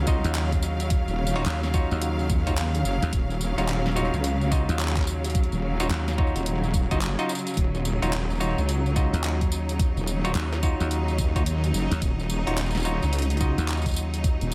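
Swaggering and gritty, this glitch hop excerpt swings its sixteenths over a single Ebm9 chord, with an overdriven, knocking electronic kick and a layered pop kit of fat snare, hi-hat, handclaps and tambourine, both re-recorded in a small room. Up front, a heavy, detuned wobble bass with chorus and tube saturation sits beside a dry, punchy, foam-muted thumbed slap bass. Twangy clav stabs through tape echo and a lush, bowed string section holding sustained chords both pump against the sidechain, all in light reverb.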